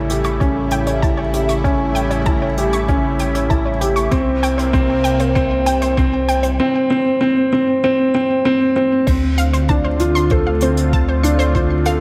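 A worn, up-front grand piano with audible action noise plays a delayed riff over a lush, detuned unison pad, a deep, rumbling saw bass with tube saturation, a round, chorused analog pluck arpeggio, a thumpy, muffled electronic kick and soft brushed kit in this intimate, hypnotic piano-and-strings electronica in D minor at 97 BPM, where the pad, bass and pluck pump with sidechain compression under echo-chamber reverb as a build-up gives way to a drop at 9.1 s.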